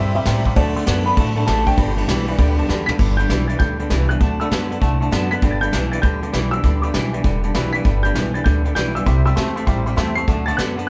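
A thumpy, woody upright bass drives this rowdy, retro rockabilly excerpt at a swung 198 BPM in G major, as a mellow upright piano carries the melody over a detuned, jangly honky-tonk piano and a bright, picked steel-string acoustic guitar in the background, while a clean, twangy electric guitar riff rings through spring reverb and an up-front brush drum kit with a punchy kick plays a fill at 2.7 seconds in a lightly reverberant room.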